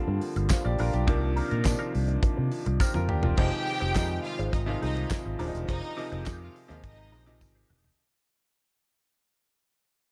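Disco with a driving, glamorous feel, this short cut is built on a dry 70s drum kit with a fat snare, tight kick and handclaps and a growly, up-front fingered bass, while a brilliant grand piano accompanies over mellow sustained French horn chords, a dark clean guitar with wah and chorus sits in the background, a jingly tambourine adds sparkle, and a lush bowed string section enters with a second line at 3.4 s as the track fades out over chords moving from Gm7 through Cm11 to Fm7.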